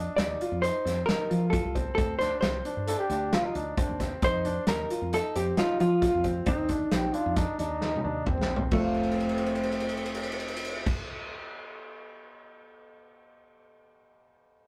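A dark, clean hollow-body jazz guitar carries the melody from the start over clear grand piano arpeggios and a woody fretless bass, with a loose indie drum kit joining at 0.2 seconds with a punchy kick and a pumping room sound. This bright, driving progressive instrumental moves at 133 BPM in 5/4 with a straight feel in F mixolydian. A breathy, intimate flugelhorn enters at 2.9 seconds with a second line full of vibrato and scooped notes, and drum fills around 7.8 seconds lead into a shift to F. The whole excerpt has the rough, tube-saturated character of a rehearsal-room recording in a small, wet room.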